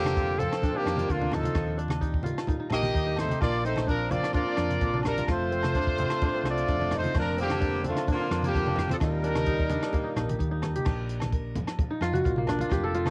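This home cassette recording has a light reverb and is cut from a longer piece of danceable, warm highlife guitar band music in Bb major at 129 BPM in a straight 4/4. Up front, a clear, punchy horn section with light vibrato carries the pop-style melody, while a tenor saxophone with subtone and scooped notes plays a jazz-style second line further back; both carry a cassette-tape colour and drop out at 10.4 seconds. A mellow, crisp kora fingerpicks ringing arpeggios through cassette tape and analog delay, and at 10.9 seconds it takes a short solo as the harmony settles on Bb. Underneath, a dark, round hollow-body electric bass holds the low end, and a very quiet, full-bodied steel-string acoustic guitar picks out the accompaniment. A compact cocktail kit with a punchy kick, dark cymbals, hi-hat and rim clicks sounds dry and natural, and low-tuned congas with hard hands and ringing agogo bells sit in the background as the chords move between Bb/F, Ebadd9 and F.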